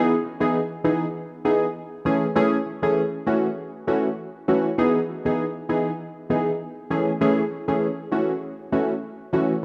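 A lightly swung sixteenth-note afrobeats groove in 4/4 sets a breezy, sunny mood in this short cut from a longer piece. A lone analog keyboard carries it from start to finish, its round, detuned sawtooth tone sitting up front with a fast attack, decaying notes, a filter sweep, chorus and tape echo, as it cycles Emaj7, Amaj7 and F#m7 and then repeats the progression from 4.8 seconds. A lush hall reverb and a touch of small-room ambience give the sound a warm, spacious glow.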